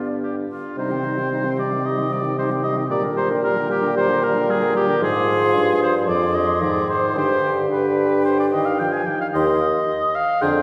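Dramatic and urgent, this quick classical-period movement for wind quintet in C minor moves at 112 BPM in a straight 4/4, cut from a longer piece and heard from further back in a wet concert hall with a long 2.2-second reverb. An airy, hollow flute carries the melody in the background with vibrato and a soft attack, while a warm, up-front oboe sings the second line above a clear, present French horn and a smooth clarinet in the accompaniment. A mellow bassoon anchors the bass up front, and the harmony moves from G to C minor and back toward G before settling on C minor over E-flat at 9.3 seconds.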